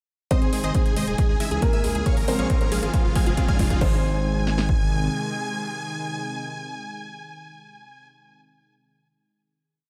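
Soaring and euphoric, this short trance piece spends its opening seconds in a build before landing on a final chord at 3.8 seconds, steeped in a dreamy hall reverb. A huge supersaw lead with vintage 12-bit sampler grit, sidechain pumping and delay carries a repeating riff in thirds and sixths over a pedal note, alongside a dark, boxy baby grand piano riff in octaves, a thick chorused unison pad and a round, warbling analog pluck arpeggio. Underneath, a punchy, up-front analog drum machine drives a four-on-the-floor kick and snare, joined by an overdriven dance kit's metallic hats and crash, a gritty, saturated synth bass galloping in sixteenths, and a very quiet riser entering at 2.2 seconds during the drum fill.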